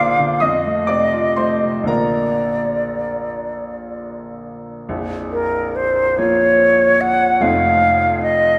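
Romantic classical duo in a rubato 6/8, serene and lyrical, in which an airy, close-miked silver flute sings the melody up front with expressive vibrato and tongued notes over a brilliant grand piano accompaniment of long sustain, both bathed in the wet, lingering reverb of a church, with the harmony darkening at 4.9 seconds in this fragment cut from a longer piece.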